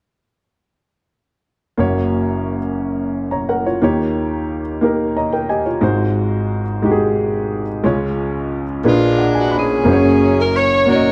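A tight saxophone section carries the melody of this hopeful, reverent gospel excerpt, its vibrato-rich, jazz-style tone sitting present and up front once it enters at 8.9 seconds. Beneath it, a warm upright piano provides the accompaniment from 1.8 seconds, its woody, smooth, vintage voice also placed up front and ranging from deep bass notes to high treble. The piano adds short fills along the way, the first around 4.8 seconds. The music moves in 6/8 with a straight feel, passing through seventh chords, including one with a flat ninth, before returning to the opening chord. A moderate large studio reverb surrounds both parts, giving this short piece, cut from a longer work, a sense of open space.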